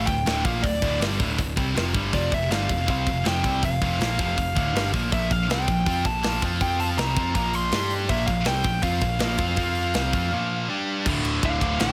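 A dark, high-gain lead guitar carries the melody from the first second, its distorted tone trailed by delay as it sings in a high register over a crushing wall of rhythm guitars. This short cut from a longer heavy metal piece feels epic and heavy, moving in a straight 4/4 as the harmony shifts from D minor through a cycle of Bb, F and G power chords before landing back on D minor at 11.1 seconds. Beneath the lead, a bright, picked high-gain guitar and a darker, sludgy overdriven guitar play the riff together, while a growly, punchy overdriven bass anchors the low end. A tight acoustic metal kit sits up front in a big room, its bright crash and ride cymbals, hi-hat, medium-tuned snare and tight kick driving the whole passage. In the closing moments, a very quiet double-tracked guitar adds another riff at 11.1 seconds, and a warm second lead line slips in, in the background, just before the cut, all under a light reverb.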